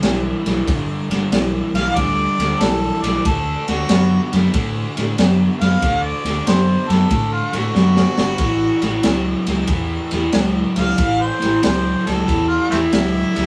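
Small room ambience and moderate reverb surround this rollicking, soulful electric blues shuffle, cut from a longer piece, swinging in 4/4 at 93 BPM in D major as the chords move from G to D to A. An overdriven raw garage guitar riff sits up front beside a crunchy, gritty breakbeat kit of tight kick, high-tuned snare and ride with a rolled-off top, while a round fingered electric bass anchors the low end, and the drums play a fill at 7.8 s. From 1.8 s a clear, up-front harmonica takes a jazz-style solo with light vibrato, tongue slaps, scooped notes and a soft attack.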